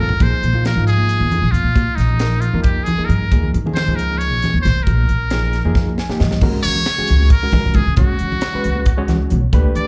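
This slick, soaring stretch of electric jazz fusion, cut from a longer piece, opens with a drum fill as a muted trumpet, an overdriven reed electric piano and an upright bass start together, pushing along at 270 BPM in eighths in a straight 7/8. The trumpet carries the solo melody with a buzzy, thin metal-mute tone and light vibrato, sitting present and brilliant over a plate reverb and slapback echo. Beneath it, the reed electric piano comps with a barky, gritty bite through a combo amp, its fast tremolo shimmering under the same plate reverb and slapback echo. The pizzicato upright bass is the loudest part, woody and growly, while the crisp drum kit brings a high-tuned snare, punchy kick, hi-hat, toms and crash, and bright congas played with soft hands tap along in the background. The harmony rides suspended chords, Bb7sus4 and Eb9sus4, until drum and electric piano fills from 5.8 to 6.4 seconds lead into a new section on Db7sus4. 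The whole thing comes across as a live club gig heard through the venue's PA, with light club reverb.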